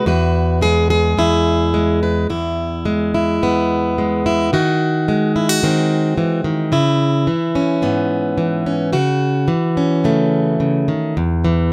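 A fingerpicked, plugged-in steel-string dreadnought acoustic guitar carries this short folk passage on its own, sitting up front with a full-bodied, warm tone and the occasional finger squeak. The mood is hopeful and nostalgic, moving at a straight 108 BPM in 4/4 in E major, with the guitar tuned slightly sharp to A4 = 444 Hz. It opens on an Eadd9 before settling onto E at 2.3 seconds. From there the harmony moves through G#7/D#, C#m7 and A6/C# and comes to rest on a bare E5 at 11.2 seconds. A moderate studio reverb gives the guitar a gentle sense of room. The passage is cut from a longer piece.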